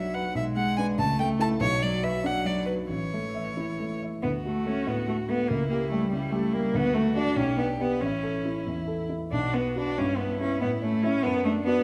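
From the first moment, a piano trio plays a quick, spirited classical-period movement in D major and a lively 6/8 at 88-98 BPM in dotted quarters, with an elastic rubato: a focused bowed violin sings the melody with vibrato, a rich bowed cello weaves a second line beneath it, and a dark, mellow baby grand piano supplies the accompaniment, all set in a moderate recital-hall reverb in this passage cut from a longer piece.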